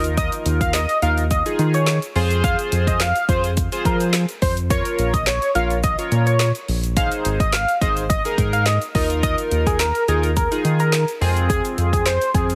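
An octave-doubled lead stands out from 0.2 seconds, a bold, retro sawtooth voice with detuned chorus and vibrato, placed up front and moving between Ab4 and F5 with sidechain pumping. This is a bittersweet, energetic dance-pop passage at 106 BPM in a straight 4/4, cut from a longer piece, with chords cycling through Ebsus2, Fm, Bbm and Ab. Beneath the lead, a round analog bass blends sawtooth, sine and triangle tones into a deep, dark, sustained low end that pumps with the sidechain. A deep house drum kit drives the groove with a deep kick, woody snare, handclaps and dark hi-hats, while a grainy, bright tube shaker sits close and dry in the background. A glossy, mellow chorused polysynth fills the middle with evolving pulse-width and wave-folded textures, also pumping, all heard through light reverb and a heavily compressed, radio-like sound.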